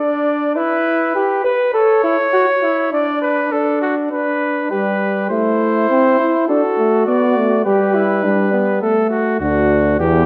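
Classical imitative canzona for brass ensemble in G major at 102 BPM, this joyful, elegant passage from a longer piece opens with a clear trumpet carrying the melody over a mellow, distant flugelhorn second line, both with vibrato. A soft-attacked trombone joins with accompaniment at 4.7 seconds, the flugelhorn drops out at 8.8 seconds, and a warm, smooth-topped bass trombone anchors the low end from 9.4 seconds. The dark production sits in a roomy recital hall reverb that lends the ensemble a graceful glow.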